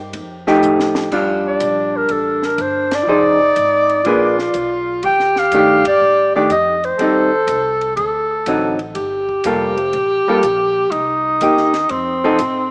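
A swung 4/4 at 122 BPM carries this short cut of small-group swing and bop in Bb major, sophisticated and warm in mood, with woody, growly pizzicato upright bass and a dry cocktail kit of dark cymbals, high-tuned snare and punchy kick adding an early fill and band accents. The dark, clean, picked hollow-body guitar comps up front through extended harmony, and a mellow, whispered tenor saxophone with soft attack and light vibrato enters at 1.1 seconds on a second line. A breathy clarinet takes the melody from 1.5 to 7.8 seconds, close-miked and warm with subtone and scooped notes, all set in plate reverb within a rough home-demo mix that has a small-speaker sound.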